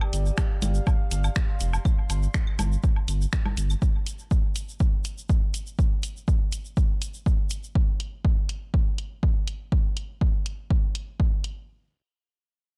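Minimal techno at 122 BPM in G minor, cool and clinical, this cut from a longer piece rests on an up-front, punchy electronic kick and an analog drum machine of finger snaps and hi-hat, both re-recorded in a large room, alongside a grainy, bright egg shaker that drops out at 7.7 seconds. For the first 3.8 seconds a round, deep, sidechain-pumped analog bass sits beneath the other layers, while a warbling, nostalgic tape-like pad with chorus and sidechain pumping fades out and claves, woodblock and congas float in dub echo over a G7 chord. The production is dark and warm with little reverb, leaving the kick and drum machine to carry the remainder.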